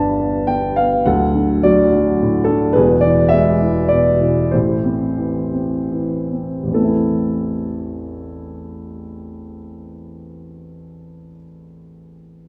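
A dark, mellow grand piano sits up front with a boxy tone, playing a moody, cool classical solo in a rubato triple metre that spans deep bass to upper treble, moving from G and D through E to A minor as it slows between 2.7 and 6.7 seconds, set in the wet reverb of a recital hall in this short passage cut from a longer piece.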